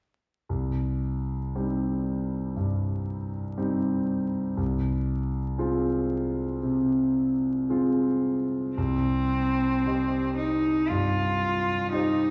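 A warm, deep-bassed concert grand piano opens this melancholic, yearning romantic duo in C minor at a rubato 54-60 BPM in 4/4, moving from Cm to Fm over a low C before a rich, intense bowed cello enters with vibrato at 8.8 seconds to sing its melody back on Cm, both played up front in a reverberant recital hall heard from further back with vinyl crackle, in this short fragment of a longer piece.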